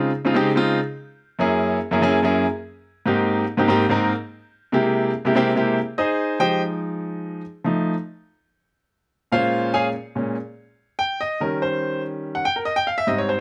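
Close, detailed microphones and a light reverb put a clear baby grand piano up front in this intimate jazz recording, with the natural sound of the instrument's action noise audible. The piano plays alone across the whole fragment, which is cut from a longer piece, and its long sustain lets the rich harmonies ring. The mood is sophisticated yet driving, moving in a straight 4/4 feel through lush extended chords such as Dbmaj9, Gb9 and Abmaj9 before reaching a C7b13. A brief fill at 5.2 seconds leads into a solo passage from 5.8 seconds that travels from Fm9 through Bbm9 and Eb6 to close on Abmaj7. The playing spans a broad range, from Gb2 in the bass up to Ab5.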